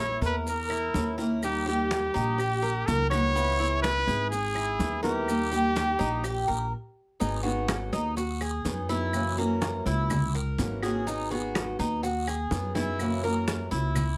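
Cuban son and guajira at 124 BPM in G# minor, this danceable, nostalgic cut from a longer piece opens with a clear, smooth-topped solo trumpet singing a vibrato melody up front until 6.7 s. Beneath it, a boxy ladder-braced acoustic guitar picks the accompaniment, a metallic double-strung Cuban tres spins arpeggios, and a dark, thumpy pizzicato upright bass holds the low end. Bright, vintage-sounding congas, raspy guiro, grainy maracas and woody claves sit in the background. After a brief stop from 6.7 to 7.2 s, the band settles into a vamp on G#m7 and F#7 in a moderate studio room.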